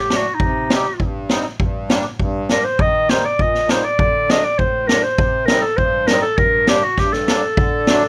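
A clear, vintage-toned clarinet carries the melody as a classical-style solo up front from the opening moment, joined at once by a reedy, airy accordion with light tremolo tuning that accompanies it through Cm, Gm, Eb and D chords. This bittersweet, soulful klezmer excerpt moves at 100 BPM in a straight 2/4, with an acoustic street-band drum kit of boomy kick and medium-tuned snare entering at 0.1 seconds, its small-room sound mid-forward and rolled-off on top. Close, detailed microphones and light reverb frame the playing, which is cut from a longer piece and runs to about 8.1 seconds.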